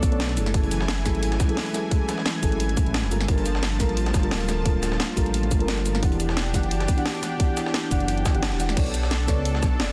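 A dense, heavily limited mix with light reverb opens this soulful, dreamy liquid drum and bass excerpt at 175 BPM, where a deep, rumbling detuned saw bass sits up front beneath a round, warbling FM electric piano with chorus, tremolo and delay, and a thick, bright unison pad pumping under sidechain. Soft-mallet vibraphone arpeggios ring with boxy 12-bit grit in the background until 8.8 seconds, drifting over lush minor-ninth chords such as F#m9, Gm9, Em9 and Bm9. A tight layered electronic kick, a garage kit with a cracking, tape-tinged snare, cabasa and crash, and a compressed, gritty breakbeat kit with filtered hats drive the drop, as the kick drops out from 8.4 seconds at a band accent before the section turns over.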